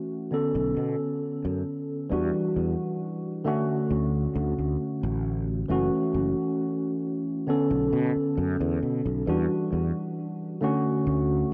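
A worn, warbling cassette sound with wavering pitch drift and a huge ambient reverb sets a faded, dreamy haze over this short vaporwave fragment, cut from a longer piece. At a slow 67 BPM in a straight 4/4, a clean tine electric piano sits up front, its tone lush with chorus and trailed by analog delay, playing the accompaniment from the very start. A sustaining fretless electric bass arrives at 0.5 seconds, bright and growly with a punchy, amped edge and a touch of tube saturation. The harmony drifts through jazzy extended chords, moving from Bm9 to Em9, Dmaj7 and F#m7 before circling back through Bm9, Em9 and Dmaj7. A brief opening passage gives way at 2.1 seconds to a longer second section that carries the fragment to its end.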